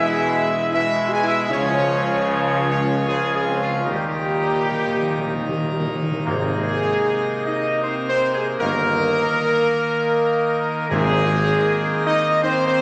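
Solemn and regal, this excerpt from a longer classical ceremonial fanfare moves in a stately 3/4 with a straight feel. A tight, up-front trumpet section carries the melody with a smooth top, a punchy attack and light vibrato, while a mellow French horn section and a bright trombone section, the latter set back in the background, hold sustained chords beneath it. A majestic full pipe organ with baroque voicing, brilliant mixtures and audible chiff sits up front alongside the brass. A distant, roomy tuba supplies the bass line. Very quiet timpani, played with hard mallets and sounding close, dry and articulate, enter with a fill at 3.9 seconds, drop out at 7.4 seconds and return at 10.9 seconds. The whole ensemble rings in the generous reverb of a scoring stage.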